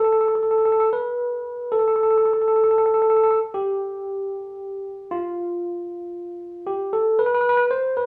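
Hypnotic and melancholic, this short Turkish-flavoured fragment cut from a longer piece moves in a straight 10/8 metre, with a lone tine electric piano carrying the solo from start to finish across its 8.1 seconds. The piano sits up front with a clean, direct, bright sound, staying within a narrow span from F4 to C5. The rough home-demo mix places it in a small room with a touch of digital ambience.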